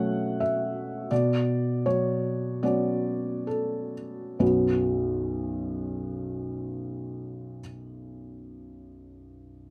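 A felt-muted upright piano plays alone in this wistful, reflective neoclassical minimalist excerpt, its mellow, intimate tone sitting up front with its action noise audible. The rubato playing slows down over the first 4.4 seconds, drifting from an F#m7/B chord to Bsus2, before a second section begins. A light reverb gives the vintage sound a small sense of space.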